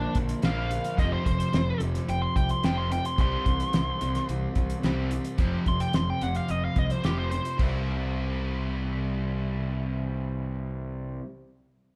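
A straight 4/4 classic rock groove at 109 BPM in C mixolydian carries a swaggering, confident mood. A bright, biting lead guitar solos from the start until 7.6 seconds over two picked, overdriven rhythm guitars riffing on chords of Bb, F5 and C, a fuzzed, up-front fingered bass and a cloth-damped, thuddy drum kit with a fat snare and dark cymbals, all played live in one large studio room with moderate reverb, in this excerpt cut from a longer piece.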